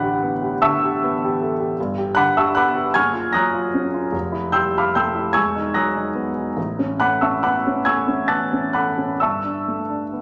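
A lush recital hall reverb, with a decay of about 1.5 seconds, surrounds this brief cut from a longer classical piece for solo piano in an impressionist style. The concert grand sits up front with a warm, intimate and natural tone, a deep bass, and audible action noise, spanning E1 to A#6. The mood is hazy and mysterious, moving in a slow, rubato 6/8 at roughly 43-52 BPM, felt in dotted quarters. Rich extended chords drift past, opening on A9sus4 and passing through Gmaj9, F#maj9, Fmaj9 and Emaj9 before reaching Aadd9 at 6.6 seconds and Gsus2 at 9.2 seconds. The passage lasts about 10.2 seconds and forms a single section of floating, suspended harmony.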